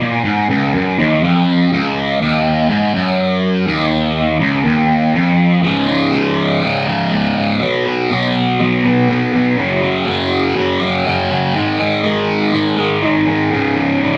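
Rock in Db mixolydian at 122 BPM, this hazy, hypnotic excerpt features a lone fuzz guitar, bright, picked, double-tracked and up front with distortion and phaser, moving from an opening passage on Db into power-chord changes through Db5, Cb5, Gb5 and Ab5 from 5.6 seconds, set in a moderately reverberant large studio.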